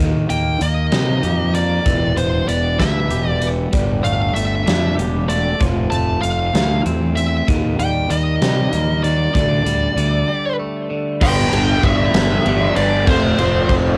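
A bright, twangy electric guitar picks compressed arpeggios through phaser and tape echo over a round, fuzzy fingered bass, opening this anthemic, restless quiet-loud alternative rock excerpt in G mixolydian at 64 BPM in 6/8. Almost at once a high-gain lead guitar carries a dark, distorted melody with a cassette-tape grit, while a big acoustic rock kit with bright cymbals, a medium-tuned snare and a tight kick fills a roomy space. After a break at 10.3 s, a raw, double-tracked garage guitar enters at 11.2 s with a lo-fi overdriven riff laced with phaser, all captured as a dry home cassette recording.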